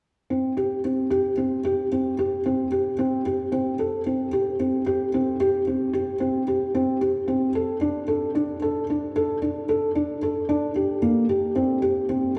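In an odd-metered 7/8 pulse counted in eighths at 224 BPM with a straight feel, this playful, hopeful contemporary instrumental fragment, cut from a longer piece, features a solo felt-muted upright piano from 0.3 to 12.4 seconds, its thick-felt tone soft, dark and intimate, with audible action noise, sitting up front within a wet cathedral reverb of 5.4 seconds in a church or concert hall.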